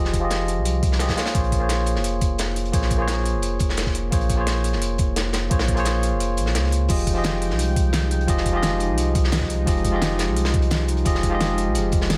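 Straight 4/4 liquid drum and bass at 173 BPM rolls along in F minor on a thumpy, gritty electronic kick, a saturated breakbeat kit with filtered hats and snare, and a layered pop kit with fat snare, crisp hats and crash, beneath a round sine sub bass and a bell-like, barky tine electric piano carrying a filter sweep and digital delay over Fm9 and Bbm9 chords. After the kick drops out at 6.2 seconds, a lush, detuned unison pad with chorus and sidechain pumping enters in the background at 6.9 seconds, deepening the melancholic mood.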